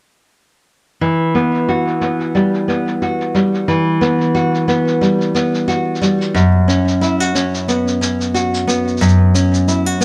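A fingerpicked nylon-string guitar sits up front, its full-bodied, deep classical tone spinning arpeggios through a low-pass filter and delay over an Emadd9 chord that shifts to Bsus2/F# at 6.3 seconds. Beneath it, a quieter sampler-style shaker sounds muffled, pitched down and overdriven, as if re-recorded in a small room, with a filter sweep running across it from 1.0 to 10.0 seconds. This wistful, delicate slice of folktronica has a lightly swung feel and a moderate studio reverb, and is cut from a longer piece.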